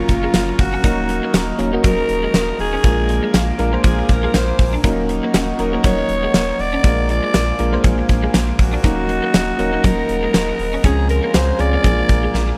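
A lightly swung 16th-note groove at 120 BPM in 4/4 drives this moody, dramatic 1980s-style pop excerpt in Eb dorian, with a punchy gated drum kit up front, a fat snare, hi-hat and tambourine over a round sine sub bass, and a drum fill arriving at 12.3 seconds. A raspy, gritty alto saxophone carries the melody up front with slapback echo, while a glassy, bell-like FM electric piano with chorus, a slightly broken-up guitar riff with ensemble chorus and slapback echo, and a very quiet double-tracked overdriven stack guitar fill out the accompaniment. Above them, a detuned sawtooth pad with a filter swell, slow attack, chorus and phaser sustains chords moving from Gbmaj7 through Ebm7 and Bb7, all set in a polished studio reverb.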